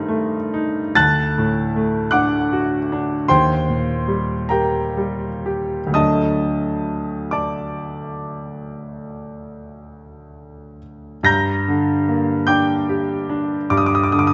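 Melancholic and mournful, this brief excerpt from a romantic classical nocturne unfolds at a slow, rubato 39-52 BPM in 12/8, with a clear, intimate baby grand piano, up front with audible action noise, ranging from D2 to Bb6 in a wet recital hall reverb as its harmony drifts from Adim/G through D and Eb to settle on Gm at 11.3 seconds.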